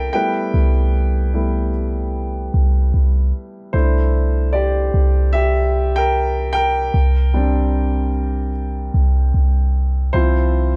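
Contemporary R&B with a dreamy, tender mood and a gently swung sixteenth-note feel, this brief cut from a longer piece sets a warm, up-front concert grand piano playing chords from Cmaj7 through C69 and Bb6/C to a rootless Dm7/C over a deep, boomy, sine-like 808-style bass that sits on a low C with a fast attack and dark decay, all in a small room.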